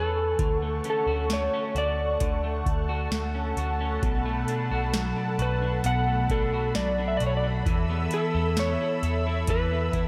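A dark, fingered electric slide guitar melody with tape echo opens this hazy, haunting dream pop piece at 66 BPM in B minor, over a thick, nasal, detuned sawtooth pad with chorus, up-front, slightly broken-up picked guitar arpeggios with analog chorus and tape echo, and a round, punchy, foam-muted bass, before a booming, overdriven analog drum machine with deep kick, crisp snare and metallic hats enters at 0.4 s, the harmony moving through Dmaj7, Bm7 and Esus4 in a moderate scoring-stage reverb.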